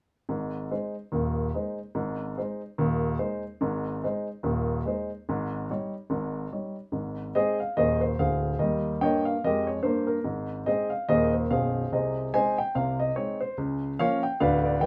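A swung 4/4 pulse at 145 BPM drives this short stride piano passage in Ab major, with a bouncy eighth-note lilt that gives it a swinging, playful character. A lone grand piano carries everything from 0.3 to 14.9 seconds, with a warm, up-front tone that spans from the deep bass register up to the upper middle of the keyboard. The harmony rests on Ab before moving to Eb7 over an Ab bass, then settles back home around 6.9 seconds and wanders through Eb7, Ab/C and Bbm/Db as a second phrase unfolds. Light reverb adds a touch of room around the close, present piano sound. The passage is cut from a longer piece.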